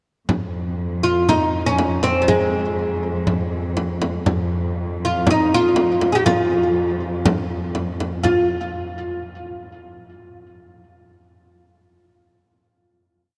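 Passionate and festive, this short Arabic maqam ensemble piece in F maqam saba moves at 121 BPM in a straight 4/4, set in a vast, echoing cathedral space. A distant, lush bowed cello section holds a low F2 drone with smooth vibrato beneath a small, dry frame drum struck with hard hands in a low and high stroke pattern. From 1.0 seconds a bright, woody fretless oud sits up front, its plectrum-plucked double strings carrying an ornamented modal melody through tape echo, until the playing gives way around 8.2 seconds to a final note that rings out to 10.2 seconds.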